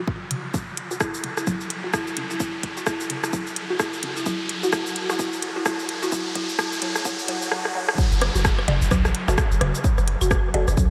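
Minimal techno with a clinical, hypnotic mood, this short cut from a longer piece builds for 8.0 seconds as an electronic riser, a punchy up-front kick and a house kit with metallic hats, cabasa and rim click drive a squelchy, resonant blip pluck riff soaked in phaser, lush chorus, sidechain pumping and analog delay, while a woody, rustic marimba plays a delayed melody on a single note. A drum fill and swell lead into the drop at 8.0 seconds, where a deep sine sub bass with a pitch-drop attack pumps underneath, electronic rim clicks, claves and percussion blips scatter through delay, and a muted, detuned dub chord stab with 12-bit sampler grit flickers in the background. The whole mix floats in a dreamy, cavernous cathedral reverb, with the drums carrying a tape-warm sheen.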